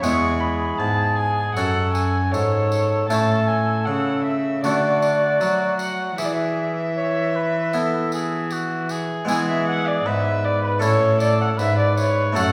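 This classical excerpt is a Renaissance-style consort dance in steady 4/4, courtly and stately in mood. A single bowed violin carries the melody with a dark, nasal gut-string tone in period style, while a cor anglais sings a second line beneath it with gentle vibrato and a soft attack. A Flemish-style harpsichord supplies airy, round plucked accompaniment, and a solo cello anchors the bass with a rich, reedy gut-string sound. A jingly tambourine sits distant and low in the mix, adding a faint shimmer throughout all 12.5 seconds. The harmony moves from E through F#m, A and D back to E, arriving on A at 10.8 seconds, and everything is bathed in the lush, lingering reverberation of a church or concert hall.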